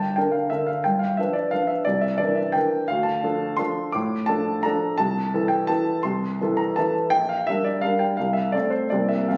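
A clear, intimate grand piano plays alone from the first moment in this sparkling, graceful classical waltz, cut from a longer piece, moving in a rubato 3/4 at roughly 154-185 BPM through chords such as Gm, G7, C9 and Dm, its up-front sound carrying audible action noise and long sustain within a moderate recital hall reverb, as heard from a phone recording in the room.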